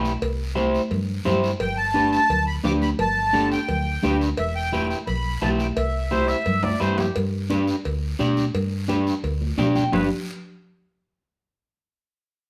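A reedy, sweet accordion carries the melody up front from 1.6 seconds, its light tremolo tuning lending an airy quality to this festive, joyful cumbia in G major at 173 BPM. Beneath it, a slightly broken-up, fingered electric guitar at the edge of break-up plays the accompaniment, while a dark, round, amped hollow-body short-scale electric bass sits up front. The percussion combines a raspy guiro, thick-skinned, high-tuned congas set in the background, and ringing metal-shell cowbell and timbales heard close and dry. A clear, punchy trumpet with vintage vibrato adds a second line, arriving at 6.1 seconds just before a drum fill marks a new section, and a clean electric guitar fill at 9.4 seconds leads into the brief final passage. The harmony moves from C through G and Em, then back through C to G, and a moderate large-studio reverb gives this portion of a longer piece a lively sense of space.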